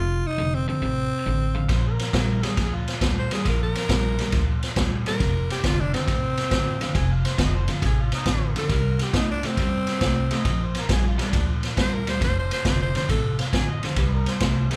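A raspy, growling tenor saxophone carries the melody over a gritty, soulful electric blues shuffle at 137 BPM in F mixolydian, moving through F, Bb and C, as a bright overdriven electric guitar with spring reverb picks a riff and a woody, thumpy pizzicato upright bass anchors the bottom; an amplified, overdriven harmonica adds a second line of scooped notes and tongue slaps briefly from 1.6 seconds and again from 6.8 seconds, while an up-front vintage kit with a punchy kick and dark ride cymbals drives the swing from 1.7 seconds, all captured as a band playing live in one room with light reverb in this short cut from a longer piece.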